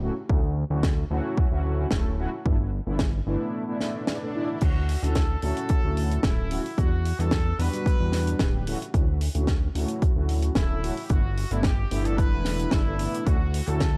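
A fat, nasal analog bass with detuned sawtooth and square-wave layers and transformer saturation sits up front beside a punchy, layered electronic kick, while a tight funk kit with a high-tuned snare, hi-hat and crash adds an acoustic small-room snap in this feel-good, sunny nu-disco excerpt. Round, dark synth brass with chorus, tape echo and an evolving filter sweep carries the Dmaj7, G69 and Em7 chords, and after a short break with an electronic swell from 3.8 to 4.6 seconds, a distant, clear trumpet section with light vibrato takes the melody at 4.6 seconds. The mix has a dry, gritty cassette-tape character with studio reverb.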